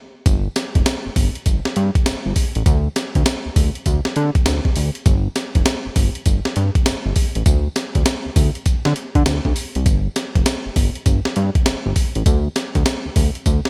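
Bright 1980s-style digital production with light reverb gives this short cut from a longer new jack swing track a slick, confident sheen. At 100 BPM in 4/4, the groove swings its sixteenths, and drums and bass run together from 0.3 seconds until around 13.6 to 13.7 seconds. The breakbeat sampler-style kit sits up front, gritty and compressed, with a thumpy kick, a medium-tuned snare, hi-hat and tambourine, all bathed in gated reverb and re-recorded in a large room. Beneath it, a fat analog synth bass moves between F1 and D3, blending sawtooth, square and triangle waves with detuning, ring modulation and saturation for a thick, mellow tone. Its fast attack, sustained notes and filter sweep keep the low end forward and full against the drums.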